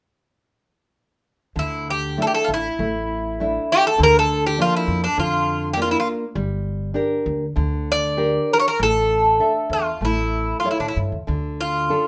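Longing and mournful, this fado-style ballad drifts in rubato at around 99 BPM in D harmonic minor, with all three parts entering together at 1.6 seconds as the chords move from Dsus2 through Gm and A back to Dm. Up front, a bright, metallic Greek bouzouki picks the melody on its double strings, some of them octave-doubled, over a full-bodied, dark nylon-string guitar fingerpicking the accompaniment. Beneath them, a woody, growly upright bass plays pizzicato on steel strings, all set in a moderate studio reverb in this short cut from a longer piece.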